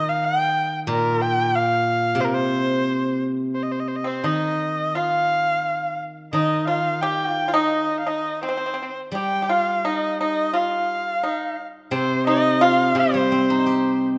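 A bowed erhu and a ringing, silvery steel-string zither open this graceful, wistful piece of Chinese traditional chamber music, cut from a longer work in the C yu mode. The erhu carries the melody with a warm, smooth tone, vibrato and portamento, its single player placed up front, while the zither supports it from below with bright accompaniment played with fingerpicks. The tempo sits around 83-94 BPM in 2/4, though the feel is rubato and flows freely. At 4.0 seconds a pipa joins with a second line, its fingerpicked tone dry and percussive against the zither's shimmer. A moderate scoring-stage reverb gives the small ensemble an airy sense of space, and the passage closes at 14.2 seconds.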